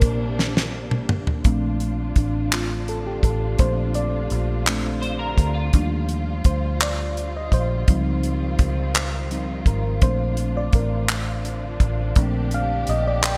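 Slow six-eight R&B with a sensual, tender mood, cut from a longer piece and given a bright 1980s-style digital sheen with light small-room ambience. A drum fill on the damped 70s kit, dry and up front with a fat snare, tight kick, handclaps, hi-hat and toms under gated reverb, leads at 1.4 seconds into a solo on the mellow FM electric piano, soft and round with chorus and phaser, over a punchy, foam-muted fingered bass and a lush, distant bowed string section with vibrato and portamento. A slightly broken-up electric guitar with analog chorus adds a brief picked second line around 5.0 seconds, while the harmony drifts through rich major-seventh and ninth chords.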